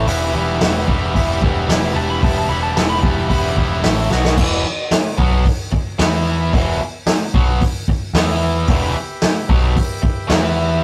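Garage rock with a raw, swaggering energy, built on a biting, double-tracked overdriven guitar riff up front, a round, punchy picked bass and a vintage drum kit with dark cymbals and a punchy kick, all in a rough rehearsal-room sound with tube saturation. A clean lap steel guitar plays a slide melody with volume swells in the background until 4.3 seconds, while a very quiet, reedy combo organ holds sustained chords early on and returns at 8.7 seconds. A drum fill at 4.1 seconds leads out of the opening passage in this short piece cut from a longer track.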